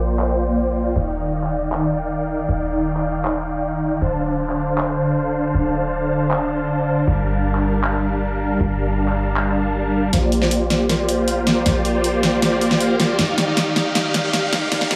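Huge, detuned supersaw chords open this emotional, lush future bass excerpt at 157 BPM in a half-time 4/4 feel, carrying the riff up front with subtle chorus, a low-pass filter and tape echo. A deep, boomy 808-style bass sits beneath them from the start, its sine tone given a noise layer, a fast attack and a mellow decay. At 0.2 seconds a layered electronic pop drum kit enters up front, with handclaps, a fat snare and warm hi-hats that sound re-recorded in a small room and softened by low-pass filtering. The harmony moves through Bb69, Ebmaj9, Dm7 and Gm7, all bathed in a lush hall reverb. From 10.1 seconds the piece turns into a build-up, with a drum fill and a filter sweep on the supersaw chords as the progression returns to Bb69 and Ebmaj9.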